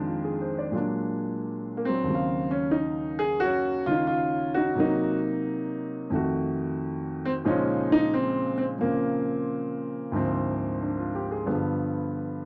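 Dry and close in a small room with a 1970s studio flavour, this cool, late-night solo jazz fragment of a longer piece features a warm, open baby grand piano placed up front, its long sustain ringing through a swung 4/4 passage of rich minor-key extended and altered harmony that runs from 0.0 to 12.5 seconds.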